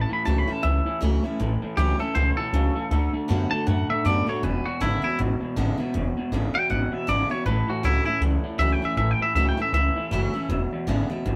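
Recorded live by a band in one room with light reverb, this rollicking, upbeat rockabilly fragment, cut from a longer piece, rolls along with a swung feel over A, D and E7 chords. Up front, a bright, clean, compressed electric guitar picks a twangy melody until 10.8 s, while an upright bass thumps woody, dark pizzicato lines on gut strings. Beneath them, a second electric guitar through a small old amp picks a slightly broken-up riff, and a full-bodied steel-string dreadnought picks the accompaniment.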